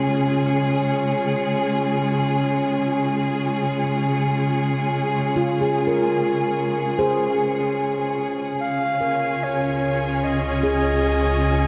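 Ambient and weightless in free time, this serene excerpt opens with a rich, vibrato-laden string section holding soft-edged sustained chords up front, a ringing handpan spilling tape-echoed arpeggios and a glassy, chorused texture of drifting overtones, before a mellow clarinet melody enters at 8.6 seconds and a dark, rumbling drone joins at 9.9 seconds, all within a vast cathedral reverb.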